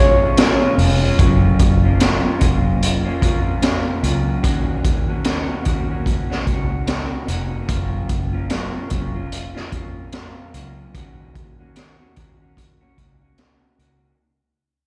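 Swung sixteenths in 4/4 drive this lonely, hazy slice of indie and bedroom pop, heard as a live gig through a venue's PA with club and recital-hall reverb. A soft, detuned electric-piano-like synth offers a brief mellow melody with chorus, echo and delay until 0.7 s, while a dark, slightly broken-up guitar through a small old amp warbles under plate reverb and slapback. A round, foam-muted bass and a gritty, saturated garage drum kit, entering at 0.4 s with a high-tuned snare and punchy kick, carry the piece through a long fade from 1.2 s.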